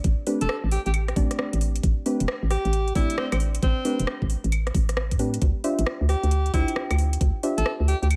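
Riding a swung 134 BPM two-step shuffle in A minor, this bouncy, skippy UK garage excerpt sets a knocking electronic kick and a tape-warm garage kit of claves, metallic hi-hats and rim clicks under a hollow, punchy FM bass up front, while deep, nasal chord stabs with chorus and tape echo move from Am11 to Dm11 at 5.4 seconds and a bright alto saxophone with light vibrato and its own tape echo carries the solo melody from 0.4 seconds.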